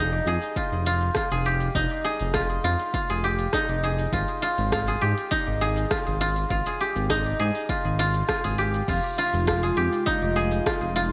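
Organic downtempo in F minor at 101 BPM, this short, meditative and mystical passage moves in a straight 4/4 over a simple Fm7 to Ab5 and back to Fm7 progression. A silvery guzheng, plucked with fingerpicks, sits up front playing ringing arpeggios, softened by a low-pass filter and trailed by delay and shimmer reverb. Beneath it, a smooth synth bass holds low sustained notes with a saturated edge. A quiet quartz singing bowl adds a pure, slowly beating tone high above, while an overdriven electronic drum kit with crisp hats, rim clicks, shaker and crash cymbal is soon joined by a punchy, layered kick. At 8.9 seconds a warbling, nostalgic tape-like pad enters with detuned, mellow sustained chords that pump against the beat under chorus and shimmer reverb, and a concert hall ambience surrounds the whole piece.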